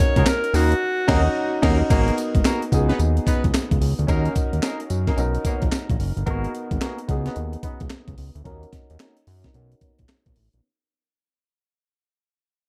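A dark, warm mix with light small-room reverb frames this slick, confident slice of new jack swing R&B in G# minor, moving at 110 BPM in 4/4 with a swung sixteenth-note feel. Up front, a gritty, compressed breakbeat sampler kit hits with a thumpy kick, a high-tuned snare, handclaps, hi-hat, tambourine and crash cymbal, while a fat, detuned sawtooth analog bass with a saturated edge holds down the low end. A clear alto saxophone with pop-style vibrato carries the melody through tape echo, then drops out at 1.6 seconds, just before the band accent ends. A mellow, intimate baby grand piano, its action noise audible beneath a low-pass filter, supplies the accompaniment. A loose jazz-style horn section, softened by a low-pass filter, adds smooth-topped stabs with octave doubling and a gentle vibrato. From 1.9 seconds the harmony cycles through chords such as G#m9, C#9sus4 and Bmaj9 as a filter sweep and a fade-out carry the passage to its end.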